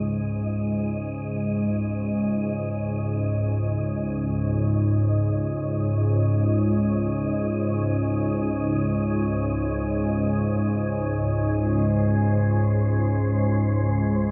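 Dark ambient drone in free time, ominous and cavernous, tuned to A4 = 439 Hz and centred on a C#5 chord in this excerpt cut from a longer piece. An up-front, organ-like drone sits low between C#2 and G#2, its detuned unison sine tone thickened by ensemble chorus and sustained with slow attack and long release. Above it, a breathy, wind-like tuned noise texture fades in across the full 14.3 seconds, softer in the mix, and both parts are bathed in a huge reverb with an 8.6-second decay.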